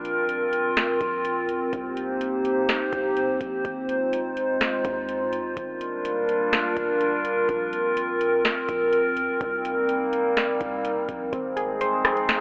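Spacious and ethereal, this atmospheric cloud-rap excerpt in C minor moves at 125 BPM with a half-time feel, built on a warbling, nostalgic lo-fi pad whose chorused chords cycle through Bbsus2, Cm7, Ab6 and Gm7 up front. A booming, overdriven analog drum machine with a deep kick, crisp snare, metallic hats and rim clicks sits forward, while a boomy, mellow 808-style bass hums deep in the background. At 11.3 s, soft, round electric-piano-like synth keys with chorus and digital delay add gentle vintage arpeggios, the whole mix bathed in a huge ambient reverb and a telephone-like tone.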